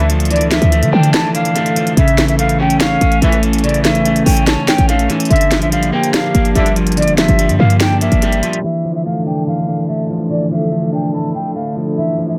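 An airy, unsteady silver flute carries the melody with vibrato, through a low-pass filter and analog delay, in this dark, melancholic trap excerpt at 144 BPM in half-time and D harmonic minor, moving through Dmadd9, A and Gm7. An up-front, slightly broken-up electric guitar plays accompaniment with the same filter and delay, while a hollow, detuned pad sustains chords with chorus in the background and a distant brass section adds roomy stabs. A punchy, tight 808-style bass and a trap kit with sharp snare, crisp hats and handclaps underpin the first part until the bass stops at 8.4 s and the drums at 8.6 s, leaving the flute, guitar and pad in a dry, echo-heavy, muffled mix.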